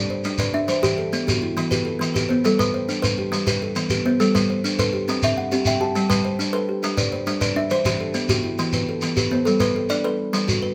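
Two plucked kalimbas carry this short section cut from a longer piece of southern African traditional music: a hypnotic, rippling mbira-style interlocking cycle in G major. One kalimba ranges from E3 to A5 with a bright, ringing thumbnail pluck and a woody, hollow-box body. The second, spanning E3 to E5, is likewise close-miked and dry, with shorter notes. Both play arpeggios from 0.0 s, over a gentle harmony that circles through G, Em and C. A grainy, mellow shekere enters at 0.2 s and keeps a straight 12/8 pulse at 137 BPM, counted in dotted quarters. The ensemble plays live together in one room, with moderate reverb from a large studio lending the shekere a sense of space.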